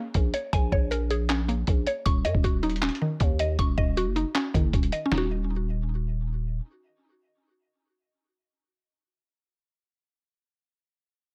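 A woody, round mallet-like synth pluck leads this brooding, hard-hitting trap excerpt, spinning arpeggios up front through chorus and delay and carrying on alone until 9.7 seconds. At 157 BPM in 4/4 with a half-time feel, the music sits in Eb minor, moving from Bbm7 to Ebm7. A growling, buzzy 808-style bass with a fast attack and decaying tail sits up front beneath it, holding the low end until 6.6 seconds. A lo-fi, sampler-style drum kit adds a thumpy kick, a medium-tuned snare, handclaps and hi-hat, its compressed, muffled sound up front until it drops out at 5.2 seconds. A digital ambience surrounds the mix, lending the hard-edged beat a sense of space.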